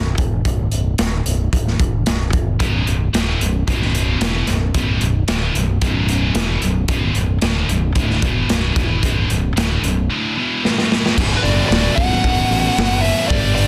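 A growling, overdriven fingered bass opens this driving, aggressive hard rock excerpt in B minor at 112 BPM, joined almost at once by a raw garage drum kit with a punchy kick, a medium-tuned snare and a saturated, gritty, pumping small-room sound. A scooped, double-tracked high-gain guitar riff arrives at 2.6 seconds, and after a drum fill a second, overdriven riff guitar sits in the background as a nasal lead guitar with a parked wah and digital delay takes the melody from 11.4 seconds. The dense, heavily limited mix carries light reverb.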